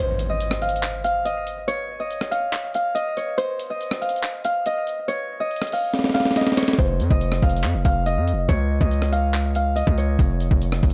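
Dark and eerie, this trap hip hop passage at 141 BPM moves in a half-time feel, opening with a ringing, fingerpicked Celtic harp melody drenched in dub echo, a brief electronic impact, and a gritty, compressed breakbeat sampler kit of thumpy kick, high-tuned snare, hi-hat, rim click and handclaps. After a drum fill, a distorted, saturated 808-style bass with a noise layer hits hard at 6.8 seconds as the harmony moves from Cmadd11/F to Db. The echo-heavy mix keeps harp, drums and bass up front under light reverb, in a passage cut from a longer piece.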